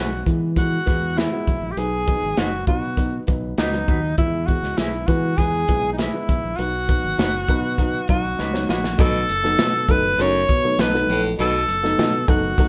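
Uptempo 1960s-style soul with a danceable feel, cut from a longer piece, in which a breathy, intimate tenor saxophone carries the melody up front over a dark, woody upright piano, twangy, slightly broken-up electric guitar stabs in the background, a bright fingered electric bass and a punchy, airy country drum kit whose fill at 8.4 seconds leads into a growling, raspy baritone saxophone riff entering at 9.0 seconds, the band captured live in one room with moderate reverb.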